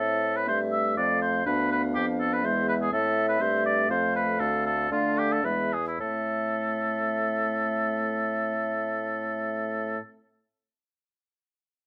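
A light reverb surrounds this restless, stormy fragment of a quick classical-period movement for wind quintet in A minor, moving in 3/4 at 106-126 BPM with a rubato feel that slows from 2.2 to 6.0 seconds before a new section begins. The concert flute carries the melody with a pure, straight tone and crisp attack, while the up-front oboe sings a clear second line with vibrato. Underneath, a dark, distant French horn and a mellow clarinet set in the background supply accompaniment, and a warm, present bassoon holds the bass.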